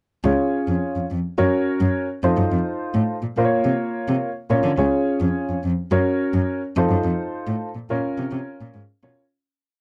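From 0.2 s a dark, woody, slightly detuned upright piano pushes close-voiced chords with grace notes while a bowed cello plays an expressive, syncopated soul bass line with vibrato, portamento, soft attacks and chromatic approach notes, both up front in a dark, warm, lightly reverberant mix, giving this short, uplifting and joyful 1960s-style soul piece at 106 BPM a boxy intimacy over its Db, Gb, F7 and Bbm cycle before a fade-out from 7.0 s.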